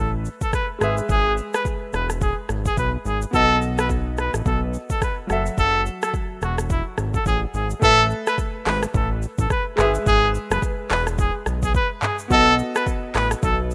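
A rough home-demo mix with light reverb carries this sunny, breezy afrobeats excerpt, where a clear trumpet with vibrato and a smooth top sings an up-front pop-style solo over a vintage grand piano, a fat, detuned sawtooth analog bass with a filter sweep, and an electronic afro-pop kit of deep kick, dark hi-hats, handclaps, rim clicks, shaker and toms that enters at 0.3 seconds.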